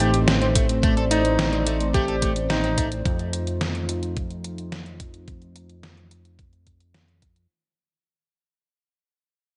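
A lightly reverberant, softly rolled-off mix fades out across this short, cinematic and nocturnal synthwave clip at 108 BPM, moving from A diminished to F7 at 3.1 s. A clangy, vintage electric grand piano with tape echo carries the melody and a slightly broken-up electric guitar riff sits in the background, both dropping out before 3 seconds. Meanwhile a shimmering, pumping pulse-width pad and a fat, detuned sawtooth bass each undergo a filter sweep over thumpy kicks, entering at 0.6 s, and an up-front 8-bit drum machine snare and hi-hat bathed in gated reverb.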